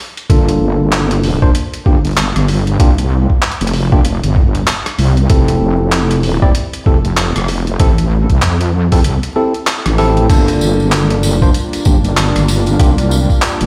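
A gritty, compressed boom bap drum kit with crash cymbal, handclaps, hi-hat and rim click opens this playful, swung glitch hop excerpt, joined almost at once by a thumpy electronic kick, a heavy, dark wobble bass with chorus sitting up front, and barky electric piano stabs through a combo amp, treated with sidechain pumping and tape echo as the chords move from Gm7 to Fmaj7. The kick drops out at 9.0 s and returns at 10.3 s, when the harmony goes back to Gm7 and a smooth, warbling vintage analog pad with a slow attack enters alongside a close, jingly tambourine. The whole mix carries light stone-room reverb and vinyl crackle, as if played on a big sound system in a bare room.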